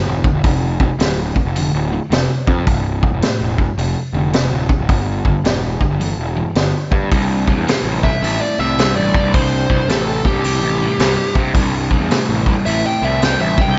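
A double-tracked, crunchy overdriven guitar riff opens this gritty, raunchy blues rock and southern rock excerpt, joined almost at once by a growly, fuzz-laden picked bass and a punchy vintage drum kit with a high-tuned snare, all set in a swung 4/4 groove under light reverb and a faint mains hum. At 8.0 seconds a dark, fuzzy lead guitar enters for a solo, its distorted tone carried by a slapback echo above the riff until the cut at 13.8 seconds.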